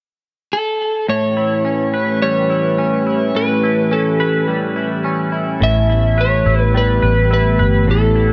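An electric slide guitar, dark and slightly broken-up with delay, carries the melody from 0.5 seconds in this dreamy, blissful dream pop excerpt at 106 BPM in A mixolydian, joined by a clean, twangy electric guitar playing arpeggios through analog chorus and delay, a hollow, flute-like pad holding sustained A9 chords, and from 5.6 seconds a round, punchy muted bass, all set in a huge ambient reverb.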